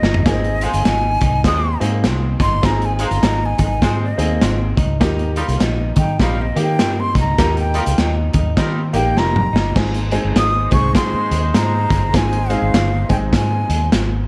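Uptempo 1960s-style soul in Ab major at 101 BPM with a swung 4/4 feel, warm and joyful, where a breathy, unsteady jazz flute with vibrato and a soft attack carries a solo over a gritty, muffled breakbeat kit that opens with a fill and adds another at 9.2 seconds, a round, foam-muted fingered bass sitting up front, a slightly broken-up guitar riff through a small old amp that drops out at 9.7 seconds, woody upright piano accompaniment with audible action noise, and a distant horn section with tube saturation and analog delay in the background, all in a dark, warm production with small room ambience.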